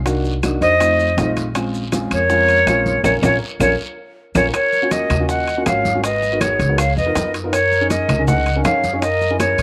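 A moderate spring reverb gives this driving, sophisticated Afro-Cuban jazz excerpt a sense of space, with an airy, metal-toned jazz flute up front, its vibrato and crisp chiff sounding slightly distant, over a breathy, hollow concert flute carrying a second line in the background. A dark, woody upright piano and a thumpy, gut-strung pizzicato upright bass hold down the harmony, while round low-tuned bongos, ringing congas and metal-shell timbales, raspy guiro, grainy maracas and woody claves fill out the percussion behind them. A drum fill and band accent from 3.0 to 4.5 seconds lead into a new section that shifts toward Eb minor.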